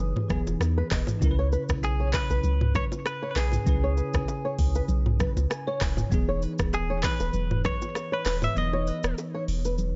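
A dry, close-sounding mix with a dark top end opens this short cut from a longer afrobeats piece, sultry and mellow at 98 BPM in C# minor with a lightly swung sixteenth-note feel. A punchy sine sub bass with a pitch-drop attack sits up front beside an electronic afro-pop kit of deep kick, metallic hats, handclaps, rim click, shaker and toms, the kit carrying a gritty vintage-sampler texture. Bongos and congas add close, dry hand percussion in the background, while a bell-like tine electric piano, bathed in analog chorus, comps through the Emaj7 and C#m7 changes and adds a short fill at 5.2 seconds. A twangy, scooped clean electric guitar, recorded direct and compressed, picks the melody through tape echo as a thumb-plucked flamenco guitar with fresh strings plays a riff alongside it. The kick drops out at 8.6 seconds for the final moments.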